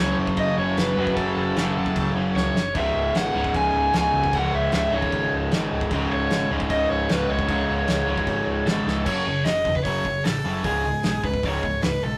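A rough rehearsal-room recording with light reverb and warm saturation frames this urgent, raw punk rock fragment at 152 BPM, moving between F#m and C#5. Up front, a dark, compressed overdriven electric guitar carries the melody, while three riffing guitars churn beneath it: a bright, tight distorted one and two crunchy overdriven ones set in the background, one of which drops out at 9.1 seconds as a new section begins. A growly, amped picked bass and a loose acoustic drum kit with dark cymbals, a medium-tuned snare, a punchy kick and a pumping room sound drive it along, with a drum fill at 2.4 seconds.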